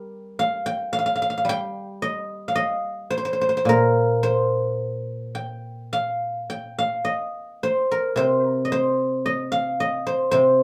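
A silvery, ringing guzheng plays alone and up front, plucked with fingerpicks across a span from Bb2 to G5 in this brief 10.6-second passage of Chinese traditional solo music. The mood is elegant and longing, set in the C yu mode at a slow 55 BPM in 2/4, with a free, rubato feel. A moderate small-room reverb gives the mellow acoustic tone a little air, and the passage is cut from a longer piece.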